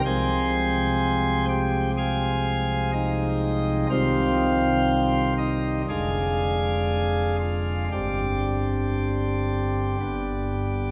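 A solo pipe organ, voiced with light, bright flute stops in a baroque manner, sits up front in this grave, solemn chorale-style classical passage, cut from a longer piece. The tempo hovers around 57 to 63 BPM in 4/4, played with a rubato feel that lets the phrases breathe. The organ spans a broad compass from a deep F1 up to C6, its sparkling flutes ringing through a wet church reverb that lingers for about 3.1 seconds. The harmony moves from F minor over C through C minor and a diminished chord on D, then settles on a suspended G that resolves to G major around 10 seconds. Across roughly 11 seconds, the sound carries the spacious, reverent glow of a church or concert hall.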